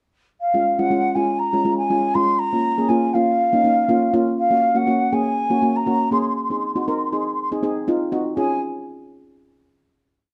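Sunny and festive, this short calypso sets an airy, wooden baroque flute up front, singing motif-based song phrases high in its range with vibrato, tonguing and a plate reverb that lends it a distant, expressive glow. Beneath it, close-miked cello pans struck with soft rubber sticks play mellow, shimmering triad chords in a steady rhythm, their metallic tone kept dry and full. Both parts enter together near the start in a dark studio room, carry a single verse through four chords, and stop at 8.6 seconds as the final chord rings out to 10.3 seconds.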